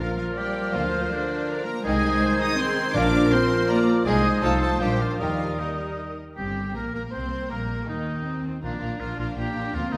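A moderate scoring-stage reverb surrounds this stormy, urgent fragment of a fast romantic orchestral movement in triple time, where a close, lush first violin section carries the melody over focused cellos and expressive double basses that join at 0.7 s. A clear oboe with a smooth top, a pure, metal-toned distant flute and a soft-attack clarinet add second lines, while a bassoon, rich violas, a background second violin section and a dark, roomy French horn section holding sustained chords fill out the texture. Very quiet hard-mallet timpani strokes sound at the opening and at 2.9 s, and the flute, clarinet, bassoon and horns stop at 6.2 s as the strings and oboe carry on.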